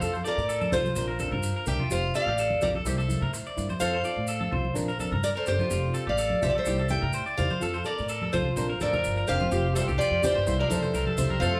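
A straight 4/4 pulse at 126 BPM drives this sunny, danceable highlife guitar band excerpt in F major: an up-front picked steel-string acoustic guitar carries the melody over thumb-plucked nylon-string accompaniment with finger squeak, twangy, slightly broken-up electric guitar arpeggios, woody pizzicato upright bass, grainy distant maracas and soft-handed congas entering at 0.6 s, while a breathy trombone adds a jazz-style second line from 8.8 s and a buzzy vintage combo organ holds chords from 9.5 s, the band playing together in one room with moderate studio reverb.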